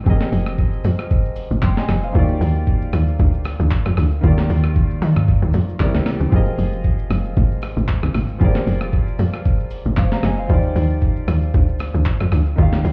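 Amapiano at 115 BPM in 4/4, this short cut from a longer piece sits in F dorian with a deep, hypnotic mood and a 55% swing on the sixteenths, tuned slightly flat to A4 = 435 Hz. A tight log drum bass drives the low end, up front, punchy and percussive, its FM tone carrying a noise layer, a fast attack and a decaying body. A breakbeat sampler-style drum kit enters at 0.1 seconds and also sits up front, compressed, pitched up and gritty, with a thumpy kick, a medium-tuned snare, handclaps, hi-hat, rim click, shaker and toms, all with a tape-warm grain. Further back, a concert grand piano plays accompaniment through the full 12.9 seconds, intimate and natural with deep bass and audible action noise. The chords move from Fm11 to Ebmaj9, touch C7 at 5.8 seconds, and return through Fm11 to Ebmaj9. The whole mix sounds muffled, as if heard through a wall from a club, with club reverb and shaped EQ.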